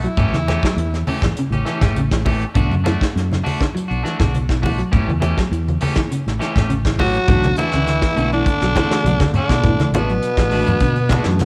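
Captured at home on cassette with audible room ambience, this intense, funky afrobeat excerpt moves at 102 BPM in B minor over A7 and Bm7 chords, built on a dark, round fingered electric bass, a punchy brush kit up front and low-tuned congas behind, while a clean semi-hollow guitar plays chorused arpeggios and a twangy, slightly broken-up guitar adds stabs with tape echo. A gritty, raspy tenor saxophone leads the melody up front, briefly at the start and again from 7.0 s, joined at that moment by a smooth-topped trombone second line with tape echo. From 7.3 s a mellow tine electric piano accompanies in the background, slipping in a fill at 10.8 s.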